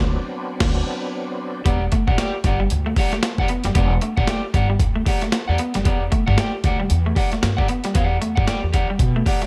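A sly, cool funk groove with a loping sixteenth-note swing opens on a break and band accent: a thick, overdriven tonewheel organ holds a sustained D13 chord with key click, chorus vibrato and slow rotary speaker until 1.6 seconds, over woody pizzicato upright bass, while a pitched-up, compressed, gritty, tape-warm sampler-style breakbeat kit with a thumpy kick and medium-tuned snare joins up front at 0.6 seconds. Two slightly broken-up picked electric guitars then take over: a dark one enters high in accompaniment at 1.6 seconds, and at 1.7 seconds, as the music settles onto Em9, the other adds a twangy riff bathed in spring reverb, all in a dry, close-sounding mix.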